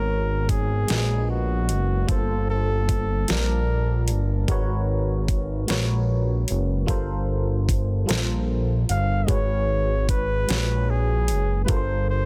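A close-miked flugelhorn with light vibrato carries a sultry, yearning melody in this slow 50 BPM six-eight R&B excerpt, dropping out after 4.2 seconds and returning at 8.9 seconds over a warbling, tremolo-laden FM electric piano, a fat, detuned analog bass up front, and an electronic drum kit with a knocking kick, deep snare and metallic hats, all rocking between G#m11 and Gm11 in a dense, heavily limited mix with little reverb.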